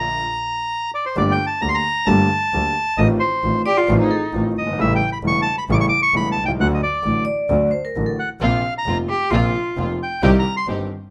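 Tango with a tense, melancholic rubato feel, in which a reedy, vintage bandoneon carries the melody up front over a deep-bassed concert grand piano and an earthy bowed double bass, while a bright, ringing vibraphone and a nasal, expressive cello add brief second lines, and a dark, lush symphonic string section returns with stabs from 8.4 seconds, following a stop between 0.3 and 1.2 seconds, all in light reverb with a faint mains hum beneath.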